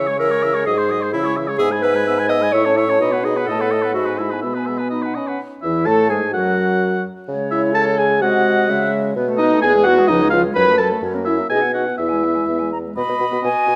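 A spirited, graceful classical-period wind quintet movement in quick duple time, cut from a longer piece, with an airy, distant flute carrying the tongued, vibrato-tinged melody over a clear, up-front oboe second line, a soft-attacked, close-miked clarinet and a roomy French horn filling in the accompaniment, and a mellow bassoon bass, the ensemble set in a reverberant recital hall as the music moves from its opening section into a second one at 5.4 seconds.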